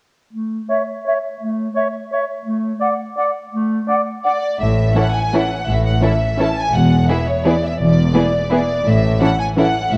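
Heard through worn, warbling cassette tape with pitch drift and a moderate scoring-stage reverb, this fragment of a sweeping, elegant classical ballroom waltz in A major moves at 169 BPM in 3/4 with uneven, rubato beats. A clear solo clarinet opens the passage around 0.3 s, joined at 0.7 s by an airy, hollow small flute group and a mellow oboe. At 4.2 s a lush, up-front violin section takes the melody, joined by cello and double bass sections in the bass, an expressive chamber viola section and a rich, distant second violin section, all bowed with vibrato, with the melody and bass carrying on until the cut at 10.0 s.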